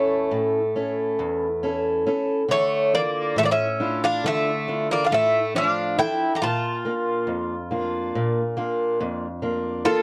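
Greek folk for a bouzouki band in 9/8, this melancholic, dark 10-second passage from a longer piece starts at 138 BPM and speeds up, moving through A, Dmadd9 and Bb. A picked bouzouki carries the melody up front with metallic double strings, some doubled at the octave, while a second bouzouki plays a lower line beneath it. An old ladder-braced acoustic guitar, boxy and also up front, adds picked accompaniment with audible finger squeak, all under light reverb with a cassette-tape sound.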